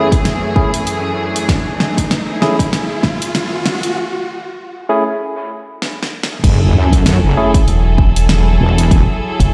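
A swung, loping groove in 4/4 drives this funky, gritty glitch hop clip, built on a punchy electronic kick and a pop drum kit with a fat snare, warm hats and crash cymbal, both running from 0.1 s to the end. A rich, smooth string section holds sustained chords on F#m9 throughout, pumping under sidechain, while a barky tine electric piano, lightly overdriven through a combo amp, fires up-front stabs soaked in dub echo and low-pass filtering until 7.5 s. The opening is a build-up, with drum fills and a riser and sub drop sound effect climbing toward a short break before the drop lands at 6.4 s with an impact. At that point a heavy, detuned sawtooth wobble bass with chorus pushes forward, joined at 7.7 s by a rubbery, hollow square bass with tube saturation and a dark, resonant filter pluck. The whole mix sits in a lush hall reverb and sounds as if it were played back through a big sound system in a bare stone room, giving it a thinned, echoing character.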